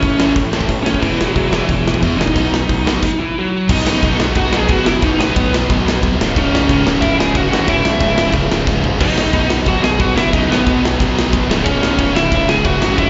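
A dark, high-gain lead guitar sits up front with the punchy kick and snare of a big acoustic rock kit, its distorted melody trailed by slapback echo and digital delay in this raw, urgent punk rock excerpt at 181 BPM. Underneath, three very quiet picked rhythm guitars, one bright and overdriven, one warm and sludgy, and one tight and double-tracked, churn through low riffs over a gritty, nasal, saturated synth bass, moving through chords such as A, E5, B and C#m. The band halts for a stop at 3.0 seconds before a new section, with a drum fill at 8.7 seconds, all heard as a live gig through a venue PA with recital-hall reverb and a muffled top end.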